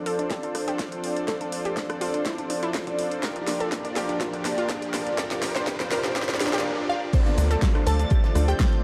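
A punchy, layered electronic kick sits up front in this dreamy, expansive progressive house excerpt, which runs through a build-up with a drum fill, a filter sweep and a rising riser before dropping at 7.1 seconds. Around it, a deep house kit adds a fat snare, cabasa, hi-hat, rim click and crash, with the cabasa, hats and crash pumping against the kick, while a background riser and downlifter add electronic sweep. A lush, nasal unison pad holds sustained chords moving from Dm7 to Gm7, and a smooth, mellow supersaw plays up-front stabs with tape echo, both breathing with sidechain pumping. A round, detuned analog pluck ripples through arpeggios in the background, joined near the drop by a wave-folded unison pluck melody and a very quiet, natural small-room country kit of hi-hat, shaker and snare. A tight, driving sawtooth sequencer bass hits from 7.4 seconds, and a clear, earthy violin section with light vibrato adds a high second line from 7.9 seconds. 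The dark production is bathed in a huge ambient reverb.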